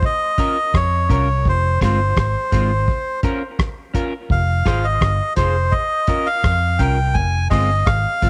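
A reedy, breathy melodica with tape echo opens this hypnotic, serious roots reggae excerpt in F minor at 84 BPM alongside a cloth-damped, thuddy drum kit of hi-hat, tight kick and rim click, joined at 0.4 seconds by a clean, dark electric guitar with analog chorus and tape echo and at 0.7 seconds by a round, punchy, foam-muted fingered bass sitting up front, all moving between Bbm and Fm in a small room with light reverb.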